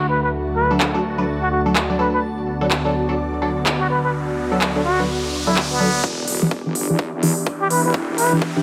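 Gritty and bouncy, this bass house excerpt moves at 126 BPM in 4/4 with a swung sixteenth feel in E minor. A plunger-muted trumpet carries the melody from the start, breathy and intimate with wah-wah inflections, vibrato and digital delay, over an airy, detuned sawtooth pad sweeping through a filter with chorus and sidechain pumping, while a blurred granular cloud pad drifts higher in its own reverb. A nasal, band-passed chord stab with phaser and delay joins at 0.7 seconds, and a big-room dance kit follows with crisp, overdriven hats and handclaps up front, as an electronic riser builds from 3.5 seconds. At 6.0 seconds the harmony moves from D to Em7 and the build-up arrives: a punchy, overdriven electronic kick lands alongside a heavy, saturated wobble bass blending sawtooth and sine, while filter sweeps move across the pad and stab. The mix sits in a moderate plate reverb that gives the parts a shared digital ambience.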